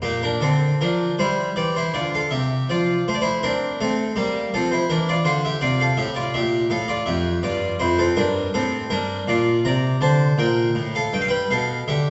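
A solo harpsichord opens this baroque-style suite movement in 3/4 at 81 BPM, its plucked, full tone from two sets of strings in the French style sitting up front while the player leans into a free rubato. The mood is radiant and dance-like, moving from Gm/Bb through C7 to a settled F before turning to Gm near 8.9 seconds and G7 near 11.1 seconds, spanning F2 to Bb5 at a pitch of A4 = 438 Hz. The instrument rings in a wet recital hall heard from further back in the room, with the top end rolled off above 7.9 kHz, and the passage is cut from a longer piece.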